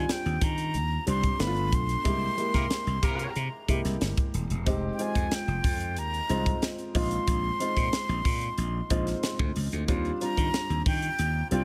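Glossy and breezy, this polished 1980s jazz-funk pop excerpt in straight 4/4 sets a breathy, close-miked concert flute melody over a concert grand piano with audible action noise and a subtle chorus, driven by a growly, up-front slap bass and a punchy fusion drum kit with a high-tuned snare. During a band accent, a distant horn section in octave doubling adds a brief second line from 2.5 to 3.3 seconds, all set in studio reverb. The harmony moves from Ebmaj13 through G9, C7b13, Fm9 and Bb9sus4 before returning to Ebmaj13.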